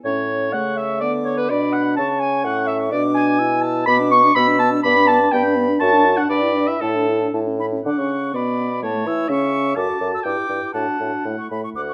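Cheerful and graceful, this is a quick classical-period movement for wind quintet in 2/4, moving at 113-128 BPM with a rubato feel, cut from a longer piece. The airy silver flute carries the melody from 0.5 s, tongued and warm with vibrato, while the clear oboe shapes a second line with a soft attack and light vibrato. The clarinet and French horn fill in the accompaniment, the clarinet dark and roomy and the horn smooth at the top, and the mellow bassoon sits up front on the bass. The music begins in A major, turns toward D major at 3.9 s, and opens a new section at 7.9 s. Close, detailed microphones capture the ensemble within a moderate recital hall reverb.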